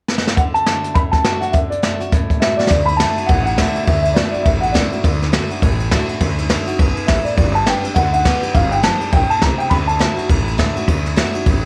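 A small, roomy ambience surrounds this rollicking, upbeat rockabilly passage, cut from a longer piece and driving along at 206 BPM in 4/4 with swung eighth notes in D major. A jazz kit played with brushes opens with a fill at 0.1 seconds, its boomy kick, medium-tuned snare, hi-hat and dark ride cymbals carrying a rolled-off top and a distant, room-filled character. A mellow, boxy upright piano carries the melody in its upper register, while a bright, full-bodied steel-string acoustic guitar with fresh strings picks out the accompaniment further back in the mix. After a second drum fill at 2.6 seconds, the upright bass joins at 2.7 seconds with thumpy, woody pizzicato on gut strings, grounding the new section. The harmony rests on D before moving to G, darkening to Gm7 and settling back on D.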